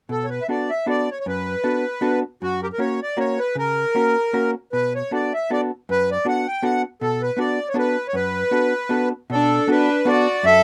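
Musette waltz in B minor at 157 BPM, bittersweet and whirling with a swung, rubato lilt over Bm7 and F# chords, in which an up-front, reedy accordion with slow beating carries the melody above a dark, clean, picked hollow-body electric jazz guitar accompaniment, until a single bowed fiddle, rich and focused with light vibrato and a smooth top, joins with a second line at 9.3 seconds, all in a dry sound cut from a longer piece.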